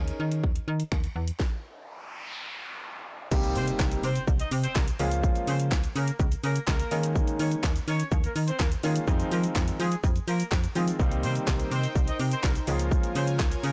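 A snappy, metallic slap-like FM bass drives this confident, overdriven dance-pop clip alongside a punchy, layered house drum kit with a cracking, softly clipped snare and an intimate concert grand piano, the bass and piano both pumping with sidechain, until a stop at 1.4 seconds lets an electronic noise sweep build to an impact on the drop at 3.3 seconds. Shortly after, at 3.6 seconds, a smooth-topped horn section takes up the melody with light vibrato, delay and pumping, and a lush, detuned sawtooth pad with chorus enters in the background at 11.0 seconds.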